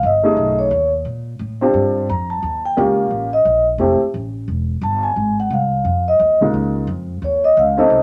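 Playful and warm, this short cut from a longer jazz performance swings briskly at 175 BPM in 4/4, in a small-group swing and bop style with a lilting eighth-note feel. A vibraphone played with soft mallets, motor off, carries the melody up front, its metallic, ringing tone kept mellow and sitting between C#5 and Bb5. Underneath, a pizzicato upright bass with steel strings plays throughout, woody and growly yet bright, reaching down to E1. A baby grand piano with a natural, short-sustain sound accompanies up front, dropping out at 4.0 seconds and returning at 6.4 seconds. The harmony moves through colorful chords such as B13, Eb9 and Fmaj9 before settling on Db69 as a new section begins at 6.5 seconds, all set in a moderate club reverb.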